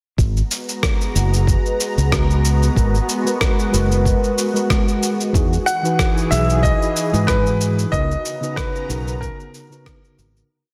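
A fingered electric bass with long gliding notes anchors this smooth sunset chillout piece, joined by a light, gritty lounge beat of overdriven electronic kick, cabasa and rim click, a lush detuned unison pad with chorus and phaser, a mellow tine electric piano playing dotted-rhythm chords from 2.7 seconds, and a brilliant grand piano stating a motif-based melody through tape echo from 5.7 seconds, all in a roomy hall ambience that fades out from 7.1 seconds.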